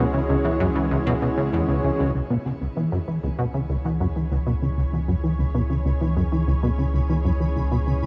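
Hypnotic and cosmic, this short cut from a longer piece of sequencer-driven space music moves in a steady, straight 4/4. Up front, a plucky, punchy analog bass plays a funky, evolving riff of sawtooth and pulse-wave tones with a fast-attack, decaying filter pluck, dressed in analog chorus, delay and shimmer reverb. Beneath it a deep, round sine sub bass holds a sustained low note, while a lush, thick unison pad of detuned sawtooth and square waves sustains bright chords with a slow attack, chorus and shimmer reverb. From 2.1 seconds the pad fades in and a filter sweep moves across the bass riff. At 2.6 seconds a faint, pulsing, tempo-synced triangle texture enters in the background, detuned and chorused with its own reverb plus shimmer, all within a dreamy mix soaked in moderate plate reverb.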